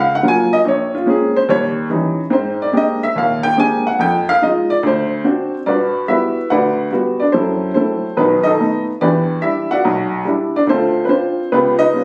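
Caught on a phone in a club with a moderate reverb, this short cut from a longer piece places a woody, boxy upright piano up front, its notes carrying a short sustain. It is playful, relaxed solo jazz at 144 BPM in a swung 4/4, with the piano alone throughout, ranging from Bb1 up to Ab5 over chords like Gbmaj7, Eb7b9 and Abmaj9#11. At 5.7 s the harmony settles into G major on Gmaj7, then moves through F#m7b5, B7 and Em7 before closing on C#7#11.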